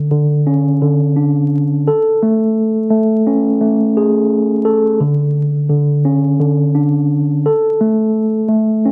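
A mellow tine electric piano carries this short hip hop excerpt entirely by itself, playing from the start to its end at 8.9 seconds in a range from D3 to A4. The mood is soulful and confident, moving at 86 BPM in 4/4 with a 58% swing on the sixteenths, and the tuning sits slightly low at A4 = 439 Hz. The piano's tone is clean and direct, placed up front, and shaped by cassette tape character along with high-pass and low-pass filtering that narrows its band. An Amaj7 chord arrives at 1.9 seconds and gives way to unharmonized playing at 5.0 seconds. Around it, the recording has a worn, warbling old-tape quality, with vinyl crackle, warbly pitch drift and light reverb adding a dusty, lived-in patina.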